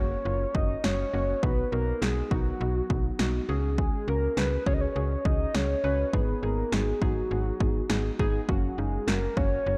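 Synth-pop with a bright, nostalgic mood, cut from a longer piece and moving in a straight four-beat pulse over a short chord progression that returns to its home chord. A soft, round octave-layered synth lead with chorus, vibrato and analog delay carries the melody up front, supported by muted, intimate felt-like synth keys with chorus and a snappy, metallic slap-like FM bass. From 0.5 s to 9.5 s a punchy analog drum machine adds an overdriven kick and snare, and the mix sits in light digital ambience with a dark production.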